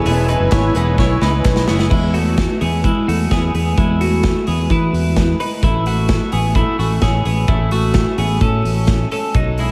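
A straight 4/4 pulse at 129 BPM drives this bright, youthful jangly indie pop excerpt in E major, with a big rock drum kit up front, its boomy kick and a drum fill at 1.0 s, over a round, punchy fingered electric bass. In the opening seconds a boxy, shimmering twelve-string acoustic guitar, a reedy, worn and slightly out-of-tune electric piano, a lush, warbling pad with chorus and barely audible group handclaps sit in the background, and once they drop away at 1.9 s the twangy, compressed twelve-string electric guitar's arpeggios with analog delay ring on over bass and drums as the harmony moves from E to A at 5.6 s. A cathedral reverb soaks the dreamy mix, which is flecked with vinyl crackle.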